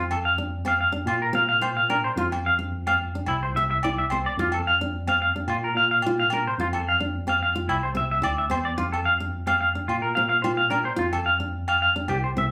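A straight, steady 4/4 groove drives this joyful, carefree highlife guitar band clip, with close, dry agogo bells ringing throughout as the band plays live together in a large studio with moderate reverb. Up front, a twangy, picked clean electric guitar spins arpeggios over a full-bodied, fingerpicked nylon-string guitar, while a bright tine electric piano, heard through its built-in speakers, carries the bass line. The harmony moves among F5, Bbsus2, Cadd9 and Bb5 before the chords fall away at 11.0 seconds.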